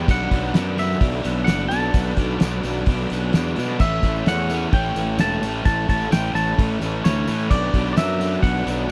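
A dry, close recording with a 1970s studio feel and little room sound carries this cool, moody indie rock fragment, cut from a longer piece. Up front, a cloth-damped drum kit thuds with a fat snare, tight kick, dark cymbals and a rolled-off top, while a growly fuzz bass, fingered and overdriven, sits just as close with a bright, amped edge. An overdriven electric guitar plays a compressed riff through spring reverb, and a thick fuzz guitar plays its own riff further back, its distortion paired with lush chorus. From 0.1 seconds a clean, twangy electric guitar carries the melody high above, ringing with spring reverb and tape echo, as a vintage, band-limited tambourine jingles in the background. A very quiet, airy pad breathes detuned sustained chords as the harmony moves from Bm7 to A and back to Bm7.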